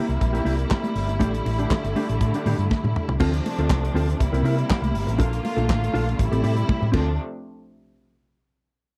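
A round, dark hollow-body bass sits up front in this sultry, danceable disco excerpt in D minor at 120 BPM, joined by a damped 70s drum kit with a fat snare, tight kick and handclaps, a clean, compressed electric guitar, lush bowed symphonic strings with vibrato and high-tuned congas in the background, all in a dry, close 1970s-style studio sound, with drum fills at 2.7 and 6.7 seconds and chords moving from C7 through Dm7, Bbmaj7 and Am7.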